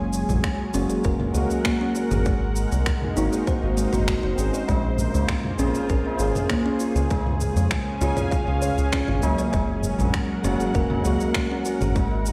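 Heard through a big sound system in a bare stone room, this brief cut from a longer organic downtempo piece moves at 99 BPM with a meditative calm, its round, deep analog bass sitting up front with tube saturation while a detuned, warbling vintage pad and a worn, slightly out-of-tune tine electric piano pump gently behind it over Gbadd9, Ab7, Bbm7 and Db chords. A woody kalimba with a thumbnail pluck spins delayed arpeggios, and a tight, overdriven electronic kick joins a produced kit of cabasa, finger snaps and toms, both re-recorded in a small room. A barely audible bronze singing bowl rings close and dry throughout, and a high-tuned, ringing tabla enters distant in the background at 4.7 seconds.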